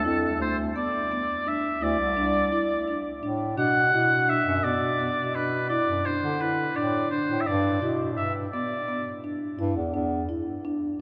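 A long, wet cathedral reverb fills this church-like space, framing a restless, playful piece of contemporary chamber music in 11/8, with a pulse of 170 BPM counted in eighths, in G major and taken from a longer work. A clear oboe with light vibrato and a soft attack carries the melody up front until 9.2 seconds, while a warm, roomy bass clarinet holds the low line and a woody marimba on rosewood bars ripples through arpeggios with medium mallets. The harmony opens unanchored, settles onto B minor at 3.6 seconds and arrives at G at 7.5 seconds, the marimba ringing on alone after the other parts finish.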